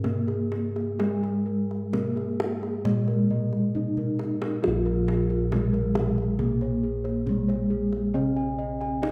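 A straight 4/4 pulse at a slow 62-68 BPM carries this serene, ceremonial Javanese gamelan passage in Bb slendro, cut from a longer piece. A bronze metallophone carries the melody with padded disc mallets, its paired tuning producing shimmering beats in a boxy small-room tone. A second metallophone plays accompaniment lower down, mid-forward yet set in the background with a soft, ringing voice. Bossed gongs play bright, airy arpeggios up front, while a lower set holds the bass with padded beaters, dark and smooth. The kendang keeps a tight, live-room sound with hard hands, playing a drum fill from 3.8 to 4.6 seconds that leads into the second section. A moderate recital-hall reverb and a dark, warm production gather the ensemble into one calm, resonant space.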